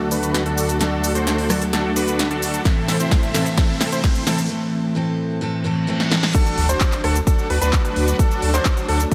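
Festival progressive house at 130 BPM in 4/4, euphoric and anthemic, opening on a build-up where an up-front picked steel-string acoustic guitar with vintage 12-bit sampler grit, sidechain pumping and digital delay rides over a lush bowed string section and a huge, detuned supersaw riff under a filter sweep, while a big-room dance kit with crisp hats and a tape-tinged room sound plays fills across D and A minor. A punchy electronic kick enters at 2.7 seconds, and very quiet risers and a reverse cymbal carry through a short break. At 6.3 seconds the drop lands with an impact as the guitar falls away, giving way to delayed, pumping grand piano arpeggios, followed moments later by a deep, saturated sub bass, all in a light reverb.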